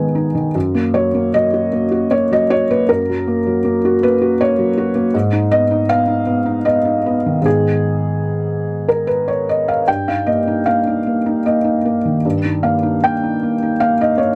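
A felt-muted upright piano sits up front in light reverb, its tone soft and dark, with the audible action noise of the instrument lending a close, vintage intimacy. This is neoclassical minimalist piano in a reflective, wistful mood, moving in 3/4 at a rubato pace that drifts between 72 and 81 BPM. The solo piano plays for the whole 14.4 seconds, reaching from F#2 up to G#5 with a smooth, mellow touch. The harmony begins on G#m, shifts to F# at 0.5 seconds, returns to G#m at 5.1 seconds and settles on D#add9/G at 9.9 seconds. Tuned slightly below standard pitch at A4 = 439 Hz, this brief excerpt is cut from a longer piece.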